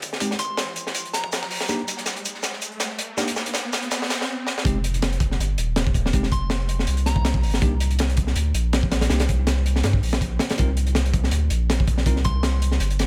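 Drum and bass with a jungle edge at 162 BPM, this nostalgic, dark excerpt opens with a gritty, saturated breakbeat kit and a quieter background kit adding shaker, a bell-like tine electric piano playing stabs with dub echo, a soft, warbling FM synth bell melody with chorus, and an electronic riser building alongside a drum fill toward a brief break before the drop at 4.7 seconds, where a deep, thick saturated sub bass enters up front beneath the tight kick and high-tuned snare in a small room ambience.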